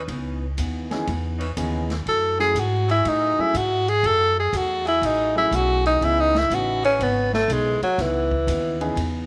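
A moderate spring reverb and small room ambience give this short big band swing cut a close, sultry feel at 122 BPM in C# minor, moving from C#m9 to F#m9 and back. A clear tenor saxophone leads up front with light vibrato and scooped notes, over a background saxophone section holding sustained chords until 7.5 seconds, a woody, thumpy pizzicato upright bass, and a boxy picked archtop guitar with finger squeak. A baby grand piano with long sustain joins at 0.9 seconds, while a vintage drum kit with dark cymbals, a punchy kick and a rolled-off top keeps the swing on hi-hat, ride and snare.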